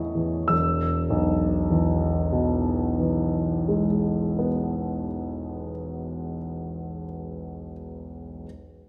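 Serene and hazy, this brief fragment of impressionist solo piano drifts in 9/8 at a slow 31 BPM, moving with a free, rubato feel. A warm grand piano, present and up front with long sustain, spans from the deep bass to the upper register across its 8.5 seconds, settling from Amaj7 onto E. A wet recital hall reverb gives the instrument the airy bloom of a church or concert hall.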